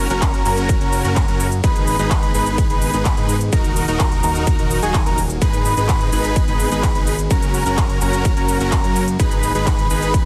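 A dense, heavily limited modern master with digital ambience carries this powerful, emotional festival progressive house excerpt at 127 BPM in G# minor, where a punchy, overdriven electronic kick and an overdriven big-room kit of handclaps, crisp hi-hat, ride cymbal and shaker drive a fat, saturated analog bass, a huge, compressed supersaw riff with delay and a bold, nasal unison lead playing arpeggios with chorus and delay, each of these three pumping to the sidechain, while a very quiet, lush pad holds slow-attack chords over F#, G#m and D#m.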